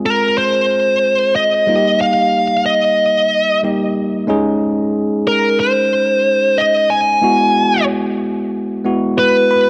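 Pop in straight 4/4, this short clip cut from a longer piece has a glossy, nostalgic mood. A bell-like tine electric piano carries the accompaniment from the start, clean and direct and placed up front, with a cassette tape colour on its tone. A high-gain lead guitar takes the melody from 0.1 s, picked and distorted, its bright voice sitting slightly louder than the keys. The harmony moves through Fm, Eb, Dbsus2 and Eadd9, and the electric piano adds a fill at 8.9 s just before the clip ends. Moderate spring reverb surrounds the home cassette recording, giving it a homemade character.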